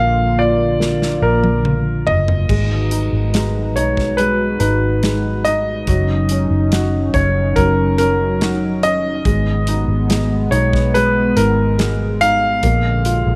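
A straight, steady 4/4 pulse carries this melancholic, longing pop ballad, where a clear, up-front concert grand piano sings the melody over a soft felt-muted upright piano with audible action noise, a shimmering, evolving chorused pulse-width pad and a dark, round, foam-muted electric bass, while a polished studio drum kit enters at 0.8 s with a fill that runs to 2.5 s, all within light small-room reverb as the chords move through Abm7 and Ebm7/Gb to a final Bb7.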